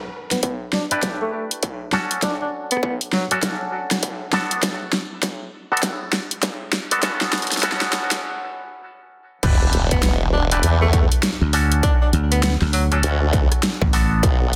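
A swung sixteenth-note groove drives this gritty, funky glitch hop cut, with a distorted electronic kick and a dubstep drum kit of huge snare and bright hats pushing through a build-up, a drum fill and a short break. A percussive, stringy clav plays auto-wah stabs with sidechain pumping and delay, while a jazz-style tenor saxophone with light vibrato and a smooth top floats lines through a low-pass filter and digital delay. At 9.4 seconds the drop lands with a background impact and a chorused sawtooth wobble bass up front, and a dry, punchy thumbed slap bass joins at 11.4 seconds in a dense, heavily limited modern mix.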